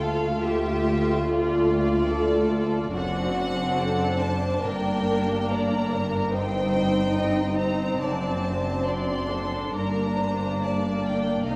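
A solemn, elegiac classical fragment opens with the whole ensemble at once: a clear, floating violin section sings the melody above a darker, intimate second violin line, while a distant viola section accompanies and a mellow French horn section holds chords in the background. A very quiet concert harp rings out arpeggios, and a lush cello section with vibrato joins a shadowy double bass section on the bass, the strings bowed sul tasto and moving with a flexible rubato. A wet scoring-stage reverb surrounds the sound as the chords pass from Dm through D7/F# to Gm, then through Cm/G and D7/F# back to Gm by 9.8 seconds.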